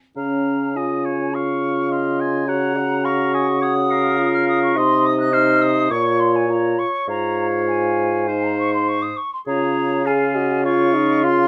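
Cheerful and graceful, this quick classical-period movement for wind quintet moves at 103 BPM in Db major with a rubato feel, cut from a longer piece. A hollow silver flute with vibrato and a crisp attack carries the melody high above a warm oboe second line, while a clear French horn with light vibrato and a clarinet, distant and in the background from 1.3 seconds, fill in the accompaniment. Up front, a dark, smooth-topped bassoon anchors the bass as the harmony passes through Ebm7/Db, Cmadd11 and Bbm before settling back on Db, all in a moderate studio reverb.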